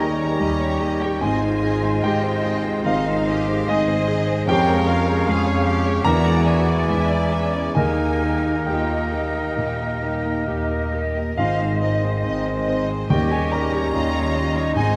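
Closely miked with light reverb, this lush, passionate romantic passage for piano and orchestra, cut from a longer piece, sets a polished, up-front grand piano melody in rubato 4/4 alongside a bowed violin section carrying the melody in the background, while a second violin section, a pure flute section, a mellow oboe and a soft-attack clarinet carry second lines, a background bassoon and a very quiet viola section fill in accompaniment, a clear, distant double bass section and a smooth cello section hold the bass, a roomy French horn section sustains chords from 1.2 s, and round, soft-mallet timpani sound until 0.8 s before returning at 11.4 s.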